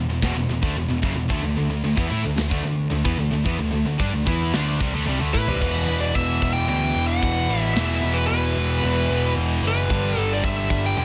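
The drums kick in at 0.2 seconds on a straight 4/4 pulse at 112 BPM, and this dark, epic heavy metal excerpt in E minor drops to a half-time feel at 5.6 seconds after a drum fill at 5.3. Three distorted guitars play the riff together: a bright, double-tracked and compressed part sits very quiet, a heavy high-gain guitar plays alongside it, and a third high-gain guitar stays in the background. Up front, a growly, punchy overdriven picked bass digs low beneath them, while the tight metal drum kit sounds polished and airy, with bright china and crash cymbals, a medium-tuned snare, a tight kick and toms. At 5.3 seconds a dark-toned, high-gain lead guitar enters up front with a melody coloured by tape echo. Harmony moves from E5 to D5, returns to E5 for the second section and lands on G5 near the end, all within a small room ambience.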